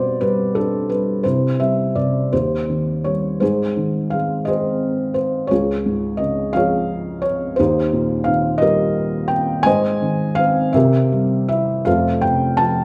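Tender and intimate, this brief classical fragment for a lone felt-muted upright piano unfolds in an unevenly pulsed, rubato 6/8, its thick-felted, dark tone sitting up close with audible action noise while a moderate concert hall reverb blooms around it, and the harmony drifts through shifting chords before settling onto F at 11.9 seconds.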